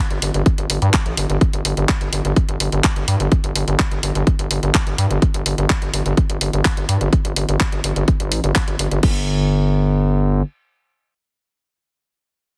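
A gritty, aggressive synth bass drives this dramatic, hypnotic melodic techno excerpt, its saturated, resonant tone sitting up front and pumping against the sidechain from the very start. Built from square, sawtooth and sine waves with oscillator sync, the bass has a fast attack and a sustained body, moving within a low register and holding on until about 10.4 seconds. A punchy electronic kick joins at 0.5 seconds, layered and placed up front, with a small-room character to its re-recorded sound. A house drum kit of crash cymbal, handclaps and hi-hat fills out the groove in a straight 4/4, and both kit and kick drop away around 9.1 seconds. The opening passage plays as a drop before a new section begins at 9.0 seconds, and the whole mix is dry and heavily compressed, giving it a dense, radio-ready punch.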